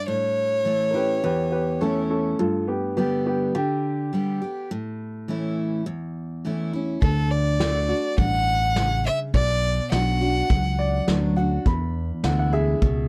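A clear, focused fiddle carries the melody with light vibrato, opening the first 2.1 seconds and returning at 7.0 seconds, over a bright, full-bodied picked acoustic guitar that runs throughout this down-home, heartfelt honky-tonk and classic country piece at 104 BPM in a straight 4/4. A woody upright piano adds a second line, while a round, punchy fingered electric bass and a distant, roomy brush kit with a rolled-off top join at 7.0 seconds. The sound is dry, moving through A, G, D, B minor and E7, tuned slightly below standard pitch.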